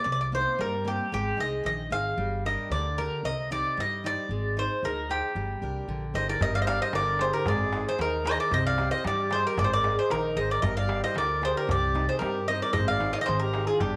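A brooding, cool excerpt of Greek folk in a straight 2/4 at 114 BPM opens with the metallic, double-strung bouzouki carrying the melody up front over a full-bodied picked steel-string guitar with audible finger squeak and a woody, growly pizzicato upright bass, cycling through Cm7, Ab and Gm. At 6.1 seconds a reedy, close-miked accordion adds a clear, dry second line, and at 6.4 seconds a crisp, deep metal-shell darbuka joins in the background. The small room carries light reverb and a touch of tape saturation.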